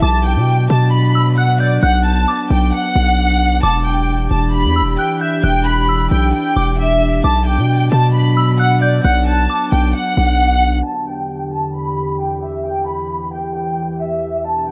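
The half-time 4/4 pulse at 133 BPM gives this dark, hard-hitting hip hop cut in E minor a heavy, deliberate gait, with chords moving between Bm and Em7. A distorted 808-style bass sits up front, aggressive and heavy, driving the low end until it drops out at 10.8 s. Over it, a lush studio violin section carries the melody with expressive vibrato and close, bowed richness, its line trailed by delay throughout. A soft FM synth bell adds a pure, warbling second line high above, treated with chorus and delay before it stops at 9.9 s. An airy, breathy pad holds sustained chords underneath with slow attacks and long releases, its chorus lending a shimmering haze. The whole is set in light reverb with digital ambience and a low-pass filter, and this excerpt is cut from a longer piece, closing on the violins and pad alone.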